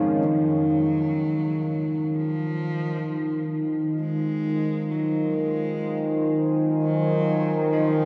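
Desolate and cavernous, this dark ambient drone unfolds in free time, cut from a longer piece and held on a single Fm7 chord. An up-front analog drone, evolving and wave-folded with a slow attack and long release, carries the low end under chorus, while a deep, detuned pad with a sub octave sits in the background and fades in from 0.3 seconds. A close, bowed cello played by one player adds an expressive, vibrato-laden line with portamento through tape echo, fading in alongside the pad, all set in a wet cathedral reverb with a 6.5-second decay.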